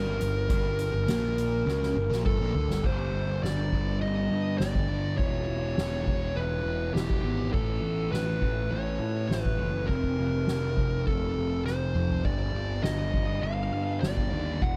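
Moving at a straight 102 BPM in 4/4, this short excerpt of psychedelic rock in G minor feels mysterious and hypnotic, steeped in a small room's echo-heavy ambience. A soft-mallet drum kit enters at 0.2 seconds with dark cymbals, a fat snare and a boomy kick across toms, hi-hat, ride and crash, adding fills from 1.7 to 2.8 seconds and again near 11.7 seconds. Beneath it, an up-front, overdriven picked bass growls low with fuzz, while a double-tracked thick fuzz guitar carries the riff through phaser and dub echo. On top, a compressed, up-front fuzz lead guitar sings the melody, its distorted tone trailing dub echo repeats. The harmony opens on Gmadd9, then from 2.8 seconds moves through G5, Em, A and F before returning to G5.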